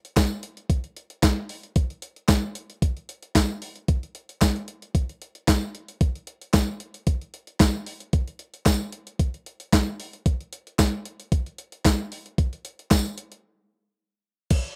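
Danceable and late-night, this short funk excerpt cut from a longer piece moves at 113 BPM in a straight 4/4 feel. A crisp 8-bit digital drum machine sits up front from the start, its sampler-style kit of thumpy kick, medium-tuned snare, hi-hat, handclaps and crash cymbal pushed through overdrive and re-recorded in a small room. A jingly acoustic tambourine joins at 0.2 seconds, tucked into the background with a small-room sound of its own. The tambourine drops out at 13.0 seconds, leaving the drum machine alone through a brief break that begins at 13.4 seconds. The whole thing carries a digital ambience and the rough feel of a home demo mix.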